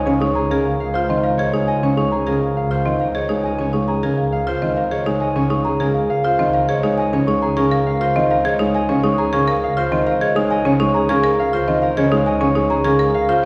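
A straight, propulsive pulse in 3/4 at 102 BPM drives this bright, minimalist classical pattern piece in D-flat major, cut from a longer work and resting on a Dbmaj9 chord. The concert harp carries the melody up front with a fingerpicked, ringing tone, while the celesta spins delicate, bell-like arpeggios high above it. A buzzing marimba struck with hard mallets adds woody, percussive arpeggios in the middle register, and a baby grand piano supplies natural-sounding accompaniment from 0.1 s until it stops at 13.0 s. Underneath, a rich symphonic double bass section holds a smooth, bowed low D-flat with lush ensemble vibrato. The whole performance sits in a church or concert hall, wrapped in a long, wet church reverb.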